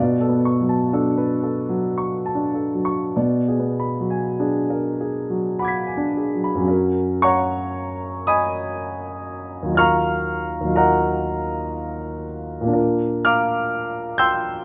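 In a rubato 3/4 that drifts between 47 and 65 BPM, this hazy, serene excerpt of impressionist classical solo piano in F# major, tuned to A4 = 438 Hz, features a warm, natural grand piano placed up front and spanning D#2 to B6, moving from Bm9 and Bm6 colours into a second passage at 6.7 seconds built on F#6, D#madd9 and A#6, all held in a moderate, large studio reverb.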